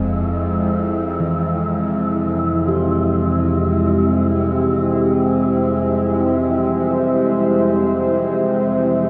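A tense, string-like bowed drone sits up front from the very start, its wave-folded sawtooth tone wavering with vibrato beneath an airy, breathy wind-like noise texture in this ominous, unsettling dark ambient fragment in free time, tuned to A4 = 436 Hz and resting on a C/F chord. A mellow bronze singing bowl enters in the background at 1.2 seconds with soft, metallic arpeggios carried on tape echo, and at 2.8 seconds a deep, moody pad with chorus and a moving notch joins with sustained chords. The echo-heavy mix sits in a moderate plate reverb.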